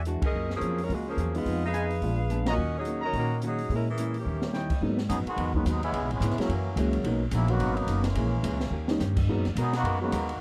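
Dramatic and brassy, this fast big band swing excerpt moves at 215 BPM in 4/4 with a swung feel, starting in Eb minor before shifting to G# minor at 4.8 s. Up front, a warm saxophone section carries the melody with vibrato while a clear trumpet section with a smooth top punches in with stabs, both dropping out by the key change. A pizzicato upright bass with steel strings gives a woody, growly foundation throughout, joined by a miked hollow-body archtop guitar sitting dark and clean in the background and a concert grand piano with deep bass entering at 1.3 s. The open jazz drum kit has dark cymbals, a high-tuned snare and a boomy kick, marking band accents and fills along the way. From 5.1 s a muted trombone section takes over as soloist, its straight mutes giving a nasal, brilliant, tight sound with light vibrato over rich extended chords. The recording is dry and close, with the intimate feel of a 1970s studio.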